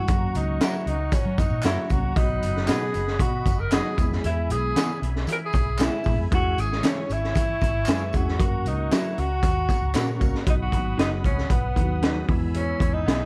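A distant, roomy tenor saxophone carries a joyful jazz-style melody with vibrato and subtone over a clean tine electric piano, a round, foam-muted electric bass, and a lightly overdriven tonewheel organ holding sustained chords in the background with chorus vibrato and key click. From 0.1 seconds a gritty, saturated garage drum kit with a punchy kick and high-tuned snare sits up front, joined by background tambourine, maracas and group handclaps until 10.3 seconds, while a picked electric guitar adds spring-reverbed stabs from 0.6 seconds. This uplifting 1960s-style soul excerpt has a dark, warm production with small-room ambience and light reverb.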